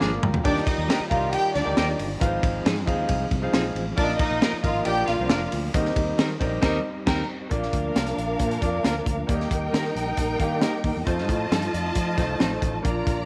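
A straight 4/4 groove at 136 BPM drives this uplifting, uptempo 1960s-style soul piece in Eb major, opening with a quick fill from the gritty, saturated breakbeat kit and the intimate grand piano, whose action noise can be heard, before lush bowed strings enter at 0.4 seconds with expressive vibrato. Up front, the drums pair a punchy kick and high-tuned snare with dark cymbals, while a fretless electric bass sounds direct and amped beneath the piano's accompaniment. Clean, picked electric guitar stabs sit in the background, and a very quiet, mellow tonewheel organ holds sustained chords with key click and a fast rotary speaker, as the full band hits an accent from 6.6 to 7.5 seconds before the second section.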